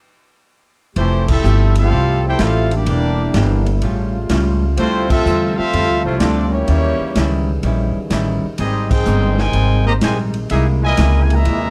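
A woody, thumpy upright bass sits up front in this energetic, brassy big band swing excerpt at 126 BPM in F major, with a vintage drum kit offering a punchy kick, medium-tuned snare and rolled-off top in a swung 4/4. After an opening stop, the band enters at 1.0 seconds: a lightly vibrato trumpet section carries the melody over a bright trombone section's second line, a clean, picked hollow-body archtop guitar adds accompaniment in the background, and a very quiet, mellow trombone section holds sustained chords. Three band accents punctuate a rich progression running from Fmaj9 through Eb7b9 and Abmaj7 to C7alt, all under light reverb in a dark, warm production.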